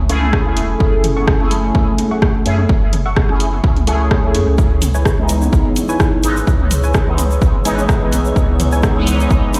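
Cavernous and hazy, this dub techno excerpt moves at 127 BPM in 4/4 with a light 16th-note swing, set in F# dorian and moving from F#m7 to C#m7 at 4.6 seconds. A punchy, tape-warm electronic kick sits up front beside a soft, round sub bass with tube saturation, while an analog drum machine supplies hi-hat and rim click and layered electronic toms murmur in the background. The most prominent melodic voice is a juicy, detuned sawtooth polysynth with a resonant filter sweep, coloured by chorus and phaser, while a muted, decaying chord stab with a filter pluck sits farther back; dub echo trails the stabs, drums and toms. A close, dry egg shaker adds bright grit from 4.6 seconds, a granular, flickering texture drifts in just after, and a dark, moody pad with a slow attack and moving notch joins at 5.4 seconds. Sidechain pumping makes the bass, synths, toms, pad and texture breathe around the kick, and light digital ambience with a large studio reverb gives the mix the feel of a big sound system in a bare room.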